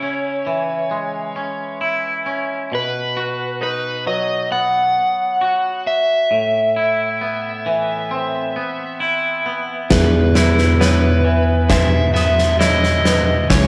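Post-rock at 67 BPM in E major, euphoric and soaring, with an overdriven slide guitar singing the melody over a twangy, clean electric guitar whose arpeggios carry a vibrato effect, moving through C#m, B and Amadd9. At 9.9 seconds the band lands on E as a growly, bright picked bass, a huge arena kit with a fat snare and punchy kick, and a felt-muted upright piano come in, the piano's mellow arpeggios sitting in the background with audible action noise. The whole band sounds live in one big room, washed in a large, wet studio reverb, and this short cut is taken from a longer piece.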